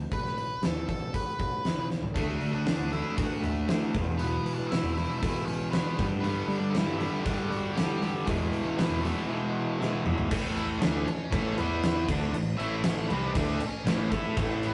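A rough, saturated rehearsal-room recording with stone-room reverb captures a cathartic, anthemic quiet-loud alternative rock excerpt, where a very quiet, boxy fingerpicked acoustic guitar plays arpeggios until 6.2 s beneath a growling overdriven bass, a dark octave-fuzz lead melody and a big drum kit with a fat snare, a punchy kick and drum fills, as an up-front overdriven guitar riff joins at 2.2 s and a bright, compressed distorted guitar riff enters at 6.2 s.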